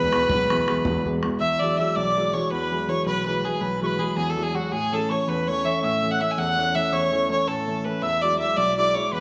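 A nasal, reedy fiddle carries the melody up front in this cheerful, rollicking Celtic slip jig in 9/8, cut from a longer piece, while a pure, bright metal whistle with vibrato and tongued chiff sings an expressive second line above it. A clear, slightly worn grand piano supplies accompaniment over chords moving from E to Eadd9 and A, and an open, boomy bodhran with a compressed, saturated sound plays only from 0.1 to 1.3 seconds. A wet recital hall reverb surrounds the ensemble.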